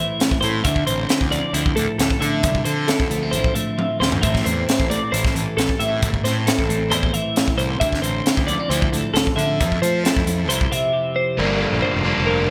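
Two twangy twelve-string electric guitars, one laying down low accompaniment with subtle chorus and the other picking high arpeggios through analog chorus, open this bright, wistful math rock and midwest emo excerpt over a crisp fusion drum kit with a punchy kick, high-tuned snare and gated reverb, plus a round, fuzzy overdriven bass, moving through Am7, Dm9 and Fmaj9 before a double-tracked, crunchy overdriven guitar riff comes in at 11.4 seconds on Gm11, set in a bright 1980s-style digital production with plate reverb.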